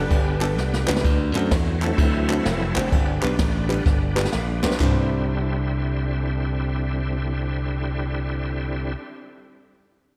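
Jubilant and hopeful, this swung uptempo gospel fragment opens with a mellow, tightly voiced saxophone section that plays the melody only until 0.6 seconds, over a woody upright piano and a glassy, punchy slap bass, with crisp group handclaps set back in the mix joining at 0.4 seconds. A bright, shouting tonewheel organ with key click, chorus vibrato and a slow rotary speaker holds sustained chords and takes a solo from 1.0 seconds. The up-front brush drum kit, with dark cymbals and a boomy kick, adds fills and drops out at 4.9 seconds, all inside a dreamy, reverb-soaked hall.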